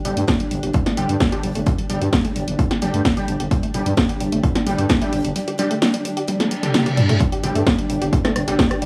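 A growling, thick FM bass sits up front in this driving, industrial peak-time techno cut, pumping against a punchy electronic kick and an analog drum machine's hi-hat, rim click, snare and toms, with a very quiet gated 80s kit adding a fat snare and hi-hat in a bright stone room. Behind them a tight, detuned sawtooth sequenced riff with chorus and analog delay runs under a filter sweep, while bright, aggressive rave stabs cut through and a cloudy, blurred granular pad drifts in the background. A drum fill from 6.3 s and an electronic reverse cymbal lead into the drop at 7.2 s, all set in a small room ambience.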